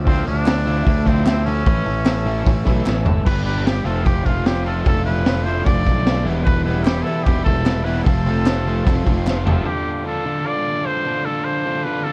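A straight 4/4 beat at 150 BPM drives this moody, bittersweet indie rock passage in D dorian, cut from a longer piece, where a gritty, saturated garage drum kit with a high-tuned snare and punchy kick sits up front beside a round, fuzz-drenched fingered bass, while a clear trumpet with light vibrato and scooped notes carries the melody over a sludgy overdriven guitar riff, a twangy, slightly broken-up guitar with analog chorus, a very quiet, buzzy combo organ holding chords and crisp group handclaps, with drum fills at 2.9 and 9.3 seconds before the drums, bass and twangy guitar drop out by 9.7 seconds, leaving trumpet, sludgy guitar and organ on a Dm7 chord in a dry, cassette-toned mix.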